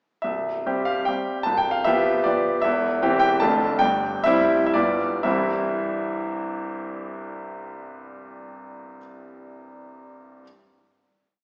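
Dotted rhythms drive this proud, rustic romantic dance in 3/4, taken with rubato at 112-165 BPM in C major and slowing from 2.1 to 5.3 seconds before a final chord rings out. A bright, brilliant solo grand piano with a natural tone carries a single-line melody over bass and chords that stress the second or third beat, spanning C1 to A5. The whole short piece sits in a wet recital hall reverb, heard from further back in the room with a small speaker sound.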